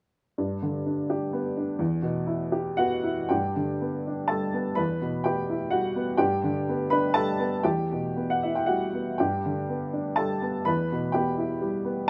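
Hopeful and tender, this neoclassical minimalist fragment in a rubato 3/4 features a solo upright piano, woody and boxy and set up front, that alternates between G and E minor from 0.4 to 12.1 seconds with a slapback echo in a dry, open-air sound.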